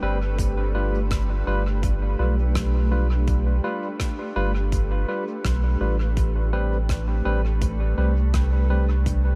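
Hazy and deep, this ambient dub excerpt moves in a straight 4/4 over a G7 chord that shifts to Am9 at 6.2 seconds. A round, mellow sub bass sits up front beneath a blurred, evolving granular cloud pad with its own built-in reverb, while a bright, barky tine electric piano plays clean stabs through dub echo. A tight electronic kick and a soft brush kit with hi-hat and rim click enter at 0.4 seconds, the brushes faint and carrying dub echo, all in a lightly reverberant space.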